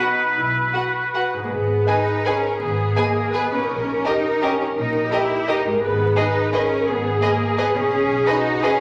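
Classical music in 3/4 at a flexible 148-185 BPM, sweeping and elegant in G# minor, this brief excerpt from a longer piece sets a lush, vibrato-laden violin melody in the background against a clear, focused second violin line, smooth viola accompaniment, rich cello and intense double bass, while ringing concert harp arpeggios sit beneath. A distant, roomy solo oboe sounds up front only until 1.3 s, and a mellow, vintage French horn section enters at 1.9 s with sustained chords. The whole is bathed in a wet recital hall reverb with a layer of vinyl crackle.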